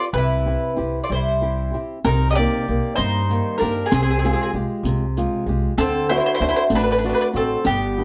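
Italian folk serenade in a straight 6/8, sunny and lively, with a woody, up-front mandolin carrying the melody through plate reverb over a mellow, round second mandolin line, fingerpicked flamenco guitar accompaniment, and a dark, thumpy gut-string upright bass, while a close, dry riq with dark jingles joins at 2.0 s in this excerpt from a longer piece set in a moderate studio room.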